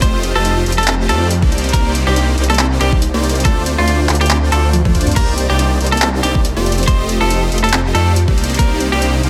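A half-time future bass groove at 140 BPM with 56% swing on the 16ths drives this dreamy, lush fragment, built on a knocking, overdriven electronic kick and an overdriven dubstep kit of bright hats, handclaps, crash cymbal and toms, with a drum fill at 4.7 seconds. A thick, detuned saw bass with chorus sits up front, while huge, bright supersaw chords move through F9, Cm9 and Dm7, both pumping under sidechain compression. A clean, hollow-body electric guitar carries the melody through digital delay, and a round, tine-like thumb-piano-style FM pluck with chorus and delay plays arpeggios in the background, in a dry mix with little reverb.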